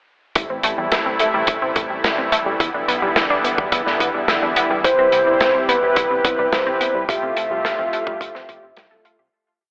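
Nocturnal and cinematic, this complete synthwave piece at 107 BPM in A minor opens with a soft, detuned supersaw pad pumping with sidechain over Am7, Em7, Cmaj7 and Fadd9 chords, a lush unison pluck arpeggio with digital delay drifting against the bar, a fat sequenced analog bass in the background, a punchy layered electronic kick and a dark, smooth studio kit playing an 80s machine backbeat of snare and closed hi-hat; at 4.8 s a round, octave-layered synth lead with chorus and vibrato carries a repeating riff up front while brassy, full-bodied synth brass stabs in dotted rhythms, all set in a lush hall reverb with a telephone-filtered tone before the fade-out from 6.3 s.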